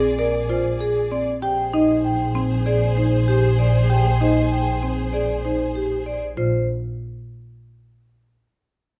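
This short excerpt from a longer classical piece in a minimalist pattern style opens with all four parts sounding together at 97 BPM in a straight 4/4, set in Bb mixolydian with a hypnotic, propulsive mood. A metallic, ringing vibraphone carries the melody, close and dry, while a woody, dark marimba spins arpeggios beneath it. A lush violin section holds sustained chords with focused vibrato and a smooth top, and an up-front bowed double bass section anchors everything on a low Bb with a soft attack and expressive portamento. The harmony moves from Bb7 to Abmaj7 over a Bb bass at 1.4 seconds. The violins drop out at 6.2 seconds, and the other parts stop at 6.7 seconds. The production is dark and warm with light reverb.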